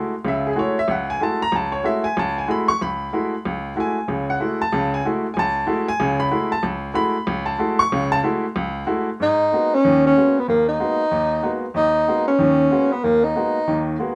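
Moderate studio reverb surrounds this short jazz fragment, cut from a longer piece, with the piano up front. At a brisk 188 BPM in 4/4 with a swung eighth-note feel, the mood is cool and hypnotic. The baby grand piano plays accompaniment from the start, its clear, intimate, natural tone ringing with long sustain and audible action noise over an F#m9 chord in F# minor. At 9.2 seconds the harmony shifts to G#m9 and the key moves to G# minor, and the tenor saxophone enters with a mellow, breathy solo melody in jazz style. Its scooped notes and light vibrato sit up front yet sound distant and roomy. The saxophone stops at 13.9 seconds, just before the piano closes the fragment.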